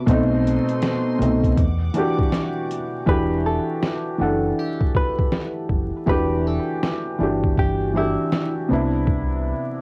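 Lo-fi hip hop at 80 BPM in E minor, this nostalgic, reflective fragment of a longer piece sways on a swung groove, with a soft, felt-muted upright piano carrying the B7b9, Em9 and Cmaj9 chords up front through cassette-tape haze, a dark, round dub bass with punchy fingered attack, and a gritty, pitched-down boom bap kit with a thumpy kick and a medium-tuned snare. A reedy chamber string section with gut-string tone and light vibrato holds quiet, close bowed chords until 3.1 s, when the hi-hats fall away and a clean, hollow-body jazz guitar takes the melody with tape echo and a low-pass filter. The whole recording has an intimate home-cassette feel, with vinyl crackle and a small room ambience.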